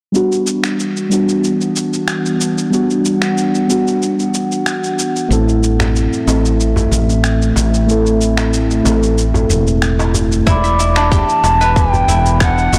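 Meditative and earthy, this organic downtempo excerpt in E minor at 93 BPM opens with muted, felt-like synth keys under a filter sweep and gritty electronic shaker and finger snaps, soon joined by a warbling, nostalgic tape-like pad. It adds a round, punchy fretless bass at 5.3 seconds and a crisp, deep darbuka in the background at 5.5 seconds. At 10.5 seconds, as the keys stop, it brings in a pure, bright bansuri melody with tape echo, ringing, silvery guzheng arpeggios and a tight, overdriven kick, all inside a huge ambient reverb and a blown-out, overdriven recording.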